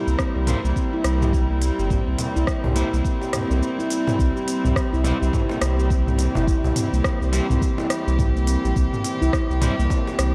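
A dark, lightly reverberant mix opens this brief excerpt of hypnotic, earthy organic downtempo at 105 BPM in 4/4 with a 16th-note swing, where meditative stainless-steel handpan arpeggios ring through digital delay over close, reedy chamber strings holding sustained chords on C7, a round, up-front sine sub bass and the strings both pumping to the sidechain, a deep electronic kick and crisp-hatted organic electronic kit with rim clicks, shaker and toms re-recorded in a large room, a bright picked clean electric guitar adding delayed accompaniment in the background from 0.5 seconds, and a woody, distant cajon with faint snares sitting behind it all.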